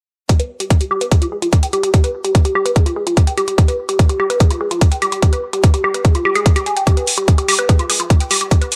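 From 0.3 s, a tight, up-front kick drum and metallic hi-hats start together with a dark, woody pluck riff, setting an alien, hypnotic psychedelic trance groove in straight 4/4. The pluck sits up front with a percussive attack, a sub-octave weight and a noise layer, colored by chorus, sidechain pumping and dub echo, while a filter sweep runs across the synth line through to 8.8 s. The drums carry a small-room character, and the overall sound is dry and close, in a short cut from a longer track.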